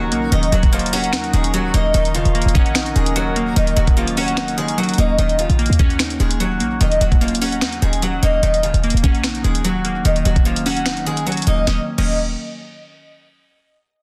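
Hip hop trap at 148 BPM in a half-time feel, set in Eb minor on an Ebm7 chord, with a menacing, melancholic mood in this short cut from a longer piece. A picked acoustic archtop guitar carries the melody with a bright, boxy tone, audible finger squeak and tape echo, while glassy digital keys with chorus and a warbling, vintage character fill in the accompaniment beneath it. A smooth sawtooth pad with chorus holds sustained chords in the background until 5.2 seconds, then drops out as the next section begins. Up front, a punchy, tight 808-style bass with a sine body and noise layer sits alongside a trap kit of knocking kick, sharp snare with soft clipping, bright hi-hats, finger snaps and crash cymbal, the kit roughened by vintage 12-bit sampler grit. Digital ambience surrounds the parts, and the master is dense and heavily limited in a modern style.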